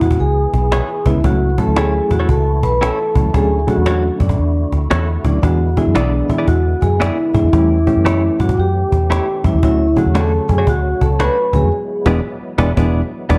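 A dark, lightly reverberant small-room production frames this uptempo 1960s-style soul excerpt at 114 BPM in E mixolydian, where a soft-mallet vibraphone carries the ringing melody with slapback echo until 12.2 seconds over a second, higher vibraphone line, a reedy electric piano with fast tremolo and light overdrive, a fat, percussive tonewheel organ turning slowly in the background, a round, foam-muted electric bass up front, a woody cajon, and clean, compressed guitar stabs with spring reverb entering at 0.7 seconds, all leading to an uplifting band accent at 11.7 seconds.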